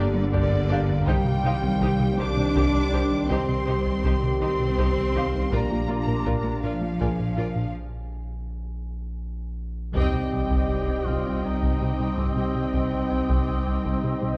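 Heard through a worn, warbling cassette with drifting pitch and a moderate concert-hall reverb, this cinematic cue blends orchestra and electronics in a slow, relentless and futuristic 6/8 built on C minor harmony. Lush bowed strings carry the harmony: a violin section sings a soft, expressive melody in the background while a second, more focused violin line rises above it, supported by an intense viola section, close and even cellos and a very quiet double-bass section. A mellow, punchy horn section and a swirling, nasal phased analog pad with chorus hold sustained chords, while a round, tine-like synth pluck traces very quiet arpeggios and a felt-muted upright piano adds intimate, dark texture. Underneath, a rubbery, hollow square bass plays a bouncy riff over a deep, saturated sub bass, and a compressed taiko ensemble with heavy sticks drives the pulse from just after the start. After a break at 7.7 seconds, the full band hits an accent at 10.0 seconds with a huge sub drop, and a distant, roomy duduk enters with scooped, folk-style notes to carry the melody until the cut.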